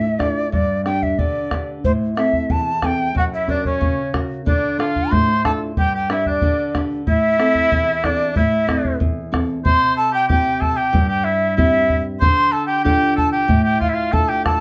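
A large quena carries the melody up front, its airy, bright wooden tone softened by vibrato and a soft attack and set in plate reverb. This is an earthy, festive Andean folk excerpt in 2/4 with a straight feel, starting at 93 BPM and gradually speeding up, tuned with A4 at 436 Hz. Close beside it, a small, woody nylon-string guitar with old strings is fingerpicked, while a round bombo enters at 0.2 seconds. At 3.2 seconds a clear oboe joins with a distant, roomy second line in a classical style, touched with light vibrato. The harmony moves through Dm, G and Am, with an F# chord early on, before the second section at 9.7 seconds opens on C and returns to Dm. The whole ensemble sits in a wet studio ambience.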